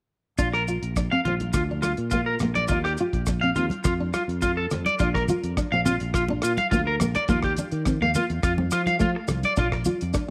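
A straight 4/4 groove from a damped 70s drum kit with a tight kick, hi-hat and rim click drives this carefree, joyful highlife guitar band excerpt, alongside grainy maracas and a fingered electric bass that sounds direct and amped, while thick-skinned congas enter in the background at 1.3 seconds. Up front, a twangy electric guitar at the edge of break-up plays arpeggios through tape echo, while a dark, full-bodied fingerpicked steel-string acoustic guitar, with audible finger squeak, supplies accompaniment. The chords cycle through Bb, Ebsus2 and F in a small room with light reverb, with a second section beginning at 5.0 seconds.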